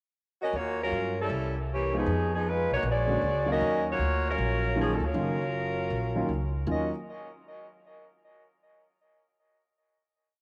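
A brisk 4/4 swing at 156 BPM opens this short, dramatic big band piece in Eb minor, its eighth notes lilting with a gentle shuffle. The mellow saxophone section enters at 0.4 s with a pickup, then carries the melody in four-part block voicing: motif-based call phrases with light vibrato and a soft attack, up front yet roomy, trailed by a tape echo. Beneath it, the upright bass plays a pizzicato two-feel line with a woody tone. From 1.9 s, a warm grand piano adds syncopated comping in rootless voicings, intimate and natural, with its action noise audible. The sultry progression moves from Ebm9 through C7b9, Fm7b5 and Bb7alt back to Ebm9, and a final chord arrives at 6.7 s, all set in a moderate spring reverb.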